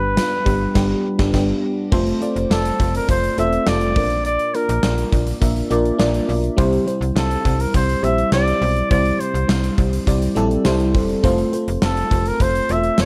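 A straight 4/4 groove from a gated 1980s drum kit, with a tight kick, bright cymbals and tambourine, enters at 0.2 seconds under this glossy, uplifting pop excerpt, and a band accent lands between 0.8 and 1.9 seconds. A snappy, slap-like FM bass with a metallic attack anchors the low end, while a lush, dreamy, chorused FM electric piano, layered with a soft pad, carries the harmony through G, F, Bb, C and back to F. Over this, a clear, punchy solo flugelhorn with vibrato sings the melody up front in a studio reverb.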